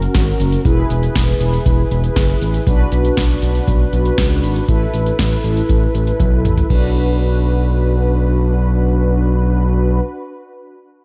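Driving yet melancholic, this synth-pop excerpt moves at 119 BPM in B dorian, with a smooth, gliding synth bass carrying saturated, wave-folded sawtooth and triangle tones and portamento under mellow, detuned synth brass that sounds round and dark through chorus and a filter sweep. An electro analog drum machine with a deep kick, punchy snare and metallic hats drives the groove, playing a drum fill from 6.2 s before dropping out at 6.8 s. The chords move from F# through E, Bm and Asus2, settling on Bm as a new section begins at 6.7 s, all in a light reverb.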